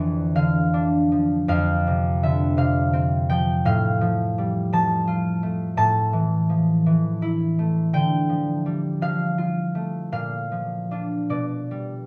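This classical solo harp piece moves in a peaceful, graceful 6/8 at 56 BPM, counted in dotted quarters, with uneven beats and a rubato feel that lets the time breathe. A single concert harp carries everything from 0.0 to 12.1 seconds, fingerpicked across a span from F2 up to A5, its ringing acoustic tone sitting up front in the mix. The harmony drifts from Dm/F through F/A and Am to Dm, then turns to Bb and reaches G7/B at 11.3 seconds, as the passage is cut from a longer work. A moderate stone-room reverb with a 1.1-second decay surrounds the instrument, and the dark, warm production gives the sound a soft, shadowed glow. The instrument is tuned slightly low, to A4 = 439 Hz.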